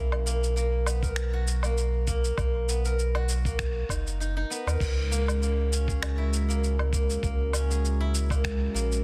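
Organic downtempo excerpt at 99 BPM in C# dorian with a light 16th-note swing and a hypnotic, meditative mood, where a ringing, silvery steel-string zither played with fingerpicks spins delayed arpeggios over a deep, round sub bass that sits up front with tube saturation and sidechain pumping, a gritty, dusty sampler-style kit of crash cymbal, finger snaps, shaker and woodblock with soft-clipped snare, a thumpy electronic kick tucked in the background from 1.0 seconds, and a smooth, dark analog pad with chorus and pumping entering at 5.0 seconds, all moving from Bmaj7 to C#m6 in a light digital ambience under a dense, heavily limited master.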